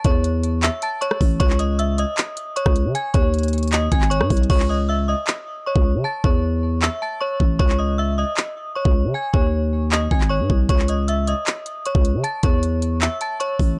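Dark and eerie, this half-time trap cut pairs a metallic, inharmonic FM bell melody, ringing and warbling through chorus, tremolo and delay, with a growling, buzzy 808-style bass and an up-front trap kit of knocking kick, crisp hi-hats, handclaps, rim clicks and crash cymbal carrying vintage 12-bit sampler grit, with the hi-hats dropping out from 4.5 to 10.7 seconds in a dry, dark production.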